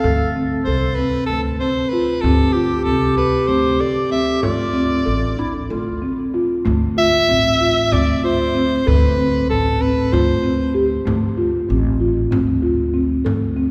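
A church's long, wet reverb surrounds this short, urgent piece of contemporary chamber music, cut from a longer work and moving restlessly in an uneven 7/8. An edgy soprano saxophone carries the melody up front in a close, classical style with light vibrato, and it drops out at 10.8 seconds. Beneath it a mellow clarinet plays a second line with a subtone and scooped notes in a jazz manner, stopping at 6.3 seconds. A buzzing marimba struck with soft mallets plays woody, round arpeggios throughout, while a growly pizzicato upright bass anchors the low end. A small, bright frame drum sits very quietly underneath, its compressed, saturated tone adding a faint pulse as the harmony settles onto a minor seventh chord at 4.4 seconds.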